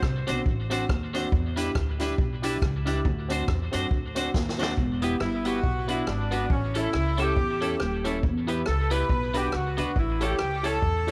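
Ska at 139 BPM with a swung, energetic drive, this cut from a longer piece runs on a woody, thumpy pizzicato upright bass up front, a swinging big-band kit with punchy kick and rim clicks, a twangy, slightly broken-up electric guitar with subtle chorus and tape echo, a dark upright piano's mellow stabs, and a jingly tambourine until 4.7 seconds, as a drum fill from 4.3 seconds ushers in an E dorian passage where a clear, loosely vibrato-tinged horn section takes the melody from 5.2 seconds.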